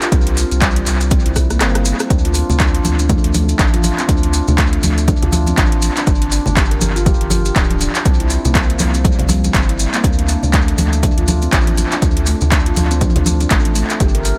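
A swung 16th-note groove at 121 BPM in D minor drives this spiritual, warm afro house excerpt, where a punchy, overdriven electronic kick and an overdriven deep house kit of handclaps, metallic hi-hat and rim click (the kick dropping out from 1.6 to 2.1 s during a drum fill) sit over a deep, round sine sub bass with sidechain pumping, while a ringing stainless-steel handpan plays airy, meditative arpeggios through sidechain pumping and tape echo, and grainy, band-limited maracas and bright, low-tuned congas that enter at 2.5 s in the background carry tape echo in an echo-heavy mix with little reverb.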